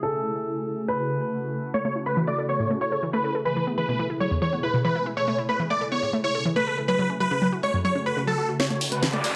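A huge, detuned supersaw lead carries the soaring melody of this euphoric uplifting trance piece at 140 BPM in A major, taking over at 1.7 s from a brilliant grand piano line, joined by a lush, punchy unison pluck playing arpeggios and a round, chorused analog pluck in the background, moving through F#m, Amaj7 and E beneath a filter sweep and moderate digital room reverb, before a cracking, up-front techno drum fill of snare and hi-hat arrives at 8.6 s, followed at 8.8 s by an electronic riser.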